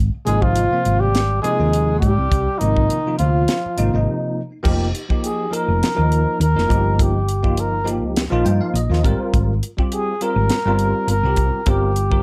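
Funky and driving, this short cut of electric jazz fusion in F minor moves at 103 BPM in 4/4 with a light sixteenth-note swing. A round, amped hollow-body bass starts things off and sits up front, joined almost at once by a tight funk kit with a high-tuned snare, tight kick, hi-hat and crash, and by a bell-like tine electric piano whose clean, bright chords carry an ensemble chorus. At first a breathy trumpet carries the melody over a close-miked tenor saxophone second line, both whispered and intimate with vibrato and soft attacks, until the saxophone drops out at 4.0 seconds. After a brief break, the trumpet takes a solo from 4.7 seconds, its dark, scooped notes sounding distant and roomy through a slapback echo. The electric piano slips in a fill around 8.2 seconds, as the harmony moves from Fm9/Ab through F9sus4, Ebadd9/G and Abmaj13 to a closing Gm7. The production is dark, warm and lightly reverberant, giving the dry, polished drums and the up-front bass a warm setting.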